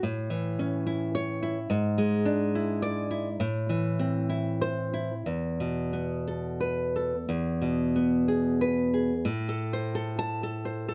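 Flowing in a rubato 4/4 at roughly 59-72 BPM, this short excerpt from a romantic solo classical guitar piece in A minor feels passionate and melancholic. A single fingerpicked nylon-string guitar sits up front, its warm, acoustic tone spanning E2 to A5, with audible finger squeaks caught by close, detailed microphones in light reverb. The harmony moves from A through E7/G# and Am to Esus4 and E, arriving back on Am at 9.3 seconds as a new section begins.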